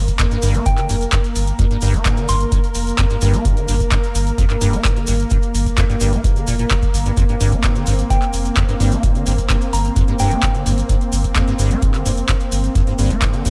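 Acid house at 129 BPM in G minor, raw and trippy, where a squelchy, resonant square-wave acid riff with lush chorus rides over a round sine sub bass and an up-front deep kick, joined by tape-warm analog handclaps and metallic hats, grainy maracas in the background, a detuned, warbling sawtooth pad pumping under sidechain, and a soft, pure FM bell melody with phaser and dub echo that appears at 0.7 and again at 8.1 seconds, all on a dry, close mix cut from a longer piece.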